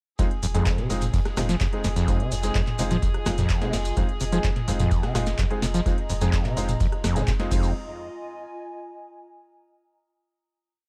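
Acid house at 127 BPM in F minor, gritty and raw, built on a Fm7 drop where a squelchy, saturated acid bass loops a 12-step line with accents and slides drifting against the bar over a four-on-the-floor electronic kick, a round sine sub bass on the off-beats, booming analog drum machine claps, metallic hats, rim and toms, a very quiet looped garage breakbeat, grainy maracas in sixteenths, dotted-rhythm baby grand stabs moved in parallel with delay, a reedy chamber string section holding a high note, and a warbling, nostalgic tape-like pad that lingers alone as the final note from 7.8 to 9.6 seconds.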